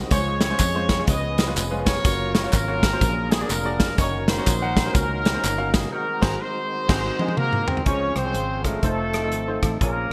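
Uptempo gospel at 124 BPM in Db major with a swung, soulful and reverent feel, this clip sets a warm, distant horn section carrying the delayed melody over a punchy kick and gated-reverb snare from an up-front country drum kit, a foam-muted fingered electric bass, a worn grand piano in the background, a very quiet, lightly overdriven tonewheel organ on slow rotary holding chords, and close tambourine and handclaps that stop at 5.8 seconds, before a band accent with drum and piano fills, during which a clear solo trombone enters at 7.2 seconds, all within a bright 1980s-style digital production.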